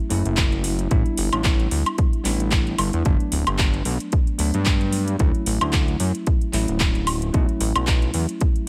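A bell-like tine electric piano opens this sunny, groovy nu-disco excerpt at 112 BPM in A mixolydian, its bright, clean chords pumping against the sidechain and trailing a digital delay over a swung 16th-note feel, moving from B9sus4 through A9sus4, Gmaj7 and Dmaj7. A fat, saturated analog bass with a detuned sawtooth tone and plucky filter sits up front, while a punchy, tape-tinged electronic kick and a house kit of handclaps, metallic hi-hats and woodblock fill out the groove with small-room ambience. The mix is dry and close, cut from a longer piece.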